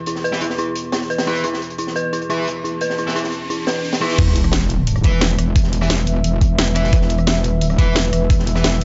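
Dark technical drum and bass with a futuristic, tense mood, cut from a longer piece: a deep, moody sawtooth pad with chorus and sidechain pumping holds sustained chords under a filter sweep, while an eerie, inharmonic FM synth bell plays arpeggios with delay until 4.1 seconds, a crunchy, gritty breakbeat kit with a high-tuned snare ticks along, and a double-tracked fuzz guitar throws distorted stabs through delay. A background riser builds toward the drop at 4.2 seconds, where an up-front metallic wobble bass with tube saturation arrives on a low E alongside an impact and sub drop. There, a knocking electronic kick and a layered drum and bass kit with a cracking snare, rim clicks and crash cymbal drive the section in light, small-room ambience with a rolled-off top.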